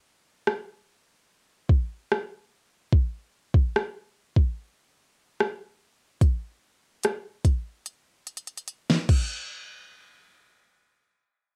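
A smooth, dreamy R&B groove opens at 0.5 seconds with an electronic, produced drum kit at a relaxed 73 BPM in a straight 4/4 feel. The kit sits up front, pairing a soft kick and a fat snare with smooth hi-hats, rim clicks and a crash cymbal. A drum fill runs from 7.9 to 9.5 seconds, and the kit stops at 9.3 seconds, just before the piece moves into a new section. A moderate room ambience surrounds the kit, captured as a home recording on cassette. Cut from a longer piece, it works as an unhurried bed.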